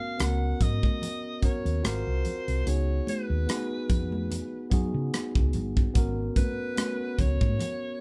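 A bright alto saxophone carries the solo melody with vibrato, sitting distant and roomy in this silky, cinematic slice of lush 1970s-style soul, played at 73 BPM in 4/4 with a gentle 16th-note swing in G# dorian. A clean tine electric piano, heard through its built-in speakers, supplies the chords, moving from a rootless G#m11 through G#13 and C#7sus4. From 0.2 s, a dark, round, punchy hollow-body short-scale bass and an airy, polished studio drum kit with a tight kick, hi-hat and rim click sit up front, while ringing, medium-tuned congas with a compressed, saturated edge stay in the background, all in the light reverb of a band playing live in one room.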